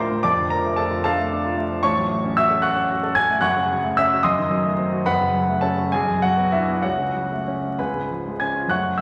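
This is a romantic classical character piece for solo piano, a short passage cut from a longer work that sets a stormy, brooding mood. It moves in 6/8 with a free, rubato feel, and the harmony darkens briefly through a diminished chord at 4.2 seconds before settling toward its closing chord near 7.8 seconds. The concert grand sounds intimate and polished, sitting up front with deep bass, long sustain and the audible noise of its action. The instrument spans from the low bass into the high treble. A wet concert hall reverb adds a generous, lingering tail, while a vinyl crackle lends the recording an aged patina.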